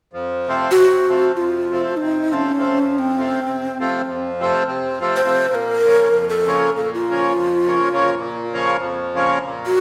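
Fiery and virtuosic, this excerpt from a longer piece in the Balkan wedding band tradition unfolds in free time. An accordion opens the passage at 0.1 s, supplying accompaniment in a reedy, full voice that sits up front in the mix. A low ney enters at 0.7 s to carry the melody, its end-blown reed cane tone breathy and close-miked, with vibrato, tongued notes and an unsteady, human edge. The ney sits louder than the accordion, so the melody leads. The harmony rests on F before moving to B-flat minor at 5.5 s. A wet scoring-stage reverb lends the sound the spacious resonance of a church or concert hall.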